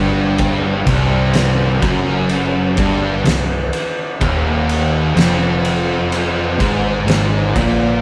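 A rough rehearsal-room sound with moderate studio reverb gives this short stoner and doom metal cut a sludgy, brooding weight, moving at a slow 63 BPM in a straight 4/4 and tuned slightly below standard pitch to A4 = 436 Hz. Up front, a bright, double-tracked tight distorted guitar plays a picked riff in a low register, built on a C5 power chord that shifts to Eb5 at 4.2 seconds. Behind it, two thick fuzz guitars, one warm and one dark, add their own picked riffs in the background. A vintage electric bass, fingered, foam-muted and round, with tube saturation on its amped tone, holds the bottom an octave below. The oversized low-tuned drum kit comes in at 0.4 seconds, sitting forward in the mix with a punchy kick, fat snare and shadowy ride cymbal, all soaked in a gritty, saturated stone-room ambience that pumps around the hits.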